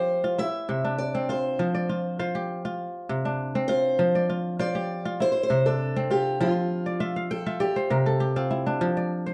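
A dark production set in a small, moderately ambient room frames this joyful, flowing excerpt of West African traditional music in a straight four-beat metre. A crisp, ringing kora sits up front with fingerpicked arpeggios across its broad range, while a boxy old ladder-braced acoustic guitar picks the melody until 8.5 seconds. The kora breaks into a fill at 6.9 seconds and rings on alone to 9.3 seconds.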